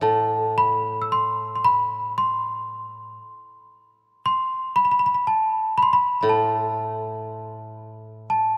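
A worn, slightly out-of-tune celesta sits up front with a delicate, bell-like melody high in its range over a dry, woody koto accompaniment played with fingerpicks in this austere, solitary 8.6-second excerpt of Japanese traditional chamber music, moving at a rubato 58 BPM in A minor, tuned to A4 = 439 Hz, within a moderate church reverb.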